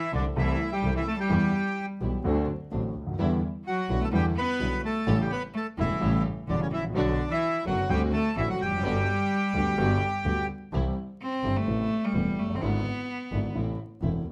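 This tango excerpt is passionate and playful, moving at 128 BPM in 4/4 with a rubato feel, first in G major and then shifting to C major at 10.7 s. A reedy bandoneon carries the melody up front, its warm, boxy small-room tone sitting close to the ear until it drops out at 10.5 s. A bright, biting cello with light vibrato and an airy, nasal bow traces an earthy second line, then takes a solo from 10.7 s. A warm concert grand piano gives a deep-bass, open accompaniment with short sustain, while a clear, bowed double bass, focused and singing with vibrato, anchors the low end. In the background, a dark, intimate chamber string section plays soft-attack sul tasto stabs with light vibrato and a smooth top. Close, detailed microphones, light reverb and a touch of vinyl crackle give the recording its character.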